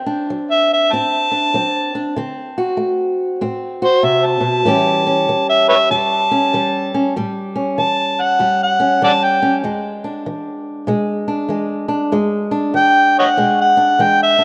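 Rollicking and swaggering, this swung acoustic country blues is a short cut from a longer piece, moving through D7, A7 and E7. A dark, woody, boxy ladder-braced guitar with old strings is fingerpicked up front from the start. At 0.5 s a gritty, amplified, overdriven harmonica takes a jazz-style solo lead full of tongue slaps and scooped notes, all set in a moderate plate reverb and a rough home-demo mix.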